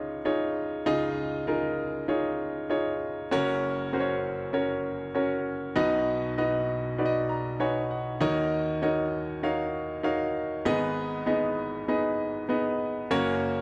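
In a straight 4/4 pulse at 98 BPM, this earnest, dramatic pop excerpt in Eb minor features a clear, polished, up-front baby grand piano playing solo through a touch of tape echo and light reverb in a dark production, moving from Dbadd9 through Gb and B before a grand piano fill at 7.0 seconds leads into a new section at 8.2 seconds built on Ebm7 and Abm.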